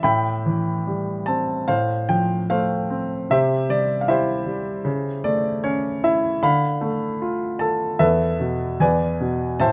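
Classical solo piano in A minor at 75 BPM, dark and reflective, in which a clear, smooth grand piano with a vintage character and short sustain sits up front in light reverb, played lyrically with rubato through a passage that moves from Am7 through F/A, C and Dm to a closing Esus4 and E7, captured with close, detailed microphones that pick up a faint mains hum in this short piece cut from a longer work.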